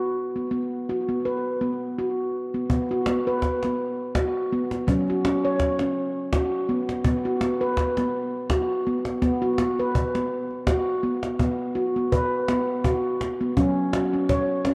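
A lightly swung 3/4 pulse at 83 BPM carries this gentle, meditative world excerpt, where a mellow, ringing handpan plays soft-fingertip arpeggios with a slapback echo over B5 and F#5 chords, a woody cajon with faint snares joins at 2.7 s, and a wet spring reverb and warbling, worn cassette tape with pitch drift give the sound an aged haze.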